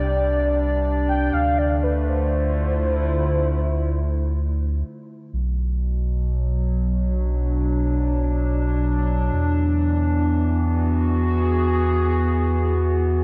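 IDM in free time, this melancholic, cerebral excerpt from a longer piece floats through a dreamy mix soaked in lush hall reverb, with the top end softened and dark. A velvety synth lead with soft attack and vibrato carries the melody, thickened by chorus, cassette tape character and tape echo, before it drops out at 4.8 seconds. Beneath it, a warbly, nostalgic pad sustains chords throughout, its detuned, wave-folded tone roughened by vintage 12-bit sampler grit and chorus. A deep, round sub bass sits up front the whole way. The harmony moves from Csus2 to Dm7, and after a brief stop the second section opens at 5.3 seconds on Bm before settling on E.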